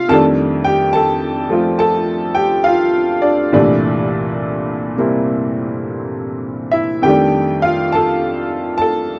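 The recording has a dry, close 1970s-style studio sound, with a small room ambience around a single instrument. This short excerpt, cut from a longer solo jazz piece, has a relaxed, warm mood at a slow 69 BPM in 4/4, with the eighth notes swung and the time stretched freely in rubato. An upright piano carries everything alone from start to finish over about 9 seconds, spanning a range from C2 up to A5. Its tone is bright and woody, with a brilliant top and long sustain, and it sits up front in the mix. The harmony moves from F13 to C13 at 3.5 seconds and returns to F13 at 7.1 seconds, giving the brief passage a lush, unhurried colour.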